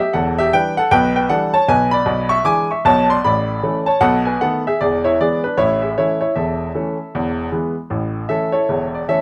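Swung eighth notes in a brisk four drive this short fragment of stride piano, which sounds swinging and exuberant from the first beat. A lone grand piano carries everything for the full 9.2 seconds, ranging from a deep E1 up to a bright D6. Its tone is clear and present, placed up front in the mix, while a moderate club reverb lends the room a lively, intimate sense of space. The harmony travels from Em7 and E7 through A, B7 and E7 before settling back on A, giving the passage a classic turnaround feel. At 7.9 seconds the music arrives on A and opens into a new section just as the fragment breaks off.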